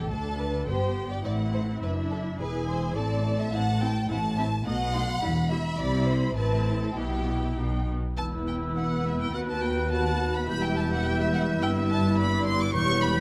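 The strings open together: a violin section carries the melody in a focused, vibrato-rich upper register, while a second violin section adds a lush counterline with expressive portamento. Beneath them, a distant viola section fills in the accompaniment, a smooth-topped cello section and an even, bowed double bass section supply the bass, and the cellos and basses sit slightly forward in the balance. This quick, dramatic classical-period movement for symphony orchestra moves at 105 BPM in 2/4 with a rubato feel, tuned to A4 = 435 Hz, and settles into E minor from 3.5 seconds with an urgent harmonic drive. At 8.2 seconds a new section begins: an airy, metallic concert flute and a dark, background cor anglais join with second lines, while a tight French horn section adds soft-attacked sustained chords from a roomy distance. The close, detailed microphones and light reverb keep the string sections vivid, and the excerpt is cut from a longer piece.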